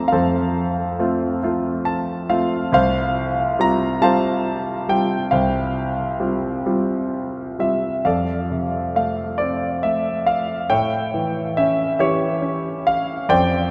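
A worn, warm concert grand piano opens this calm, tender classical fragment alone, its deep bass and present, up-front tone moving in a rubato 6/8 through a vast, echoing cathedral reverb, with a brief fill at 1.4 s and a new passage from 8.1 s where the harmony shifts from F6 to A7.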